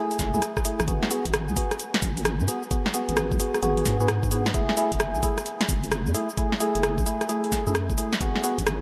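A hollow, nasal organ stab opens this moody, skippy two-step UK garage excerpt at 131 BPM in F# minor, with lush chorus and diffuse ambient delay, soon joined by an up-front garage kit of woody snare, metallic hats, cabasa and rim click that plays a fill at 0.4 seconds, a knocking electronic kick and a deep, dark wobbling bass with chorus, all moving between F#m9 and G#m7 in a dreamy mix soaked in cathedral reverb.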